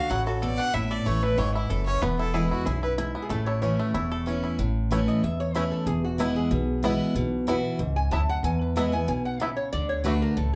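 Bluegrass in A major at a brisk 187 BPM in straight 4/4, joyful and rustic, cut from a longer piece and heard from further back in a small, reverberant room. A rich, earthy fiddle with light vibrato and an airy bow carries the melody up front at the start, bowed by a single player until 2.9 seconds. Beneath it, a bright, full-bodied jumbo acoustic guitar picks the accompaniment, a twangy, percussive banjo rolls out fingerpicked arpeggios, and a woody pizzicato upright bass holds down the low end. At 3.0 seconds a lap resonator guitar enters with a metallic, nasal second line, played with fingerpicks and a slide, and from 4.6 seconds it takes a solo with a steel bar. The chords move from D through A and E, touching a Bsus4 before returning to E and D.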